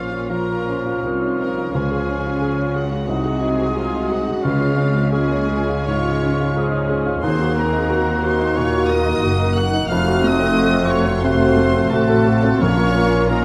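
Passionate and brooding, this rubato romantic passage for piano and orchestra sets a polished grand piano and a smooth chamber violin section on the melody over airy flute, dark distant cor anglais, mellow clarinet and focused symphonic violins, with bassoon, portamento-inflected violas and soft French horn chords filling the middle, lush cellos and double basses beneath, and close, dry timpani entering at 12.6 seconds, all carried by a moderate scoring-stage reverb.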